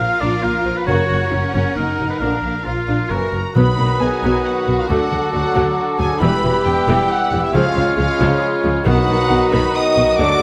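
A moderate scoring-stage reverb gives this cut from a longer heroic adventure film score a spacious, lush sound, soaring in F# major at 136 BPM in 3/4. A dark violin section carries the melody over a distant, rich second violin line, a roomy solo oboe, close viola accompaniment and a bass of focused cellos and soft-attack double basses. Clear French horns and vintage trombones add sustained chords from 0.9 s, with round calf-head timpani beneath. Mellow trumpet stabs arrive at 3.3 s, and at 3.6 s a pure flute and a very quiet, present clarinet join with second lines.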